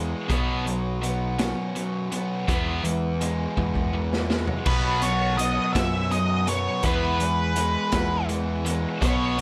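Indie rock in a lilting 6/8 at 55 BPM (dotted quarters), this upbeat, carefree excerpt from a longer piece moves between Bsus2 and E as a biting overdriven guitar and a bright, compressed fuzz guitar with subtle chorus play riffs over a growling, overdriven picked bass. A raw garage drum kit enters at 0.3 seconds, up front and gritty, with a punchy kick, dark cymbals and a pumping small-room sound, and it plays a fill from 3.6 seconds. At 4.7 seconds a dark, distorted octave-fuzz lead guitar enters with a melody, all set in light reverb.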